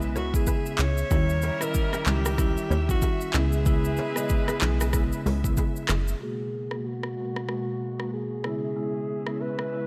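Sultry and mellow, this afrobeats cut from a longer piece sits at 94 BPM in G# minor with a lightly swung 16th-note feel, driven by an up-front electronic drum kit with a deep kick, dark hats, handclaps, rim clicks and shaker, and a punchy, funky analog bass that drops out at 6.1 seconds. A breathy, subtoned alto saxophone carries the melody with vibrato and scooped notes over woody rosewood marimba, a lush bowed string section and a crisp, ringing kora riff with digital delay in the background, while a clear, tight vintage horn section adds a second line until about 5.9 seconds. The chords move from C#m7 through D#7b9 to a G#m9 at 6.2 seconds, where a filter sweep carries the passage through to the end, all set in a small room.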